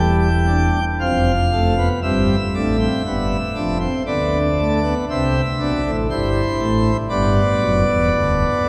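Classical, baroque-style three-part fugue for solo pipe organ, heard in a short passage cut from a longer piece. The mood is stately yet lively, moving in an unhurried, straight four-beat pulse. The organ plays the whole 8.7 seconds on a full plenum with mixtures, a brilliant sound with romantic voicing that sits up front and reaches from deep notes in the low bass up into the treble. The harmony opens on a rootless chord before settling onto F, then returns home to C and turns toward G at the close. A long, wet cathedral reverb surrounds the instrument, letting each chord ring and blur into the vast space.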